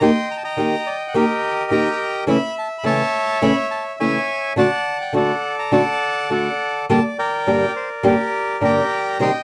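A reedy, bright bandoneon carries the melody up front, singing between G4 and C6 across this short tango excerpt cut from a longer piece. Beneath it, a small, bright nylon-string guitar is fingerpicked close to the listener, its acoustic tone marked by audible finger squeaks as it accompanies from G2 to G4. The mood is sultry and melancholic, set in G harmonic minor at 104 BPM in 4/4 with a rubato feel, tuned slightly low at A4 = 437 Hz. The harmony moves through Eb, A/C#, D and Gm over roughly nine seconds. Light reverb and a dark production give the pair an intimate, shadowy setting.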